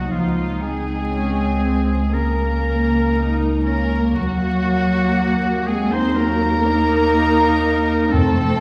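Classical, a slow romantic orchestral movement cut from a longer piece, melancholic and yearning at 60 BPM with a rubato feel, moving from Bbm/Db to Cm7b5/Eb. Muted violins carry the veiled melody in the background while a second violin line, pure bright silver flute, clear oboe with light vibrato and a distant, roomy clarinet weave supporting lines. Dark con sordino violas, mellow French horns holding sustained chords, and cellos and double basses anchor the harmony beneath, and round, soft-malleted timpani join up front at 8.1 s. The whole is bathed in a wet scoring-stage reverb, heard from further back in the room under a layer of vinyl crackle.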